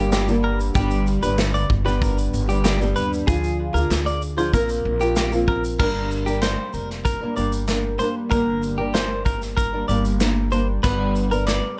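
Lightly reverberant and intimate, this wistful, reflective acoustic pop fragment sets a double-tracked, thumb-plucked nylon-string guitar up front beside a woody, thumpy pizzicato upright bass on gut strings, while a clean, compressed electric guitar picks warm arpeggios through subtle chorus and delay, a roomy, distant unplugged kit played with bundle sticks brings a punchy kick, snare, shaker and crash cymbal, and a very quiet, hollow group handclap sits underneath as the harmony drifts from Gm through Ddim and Bbsus2.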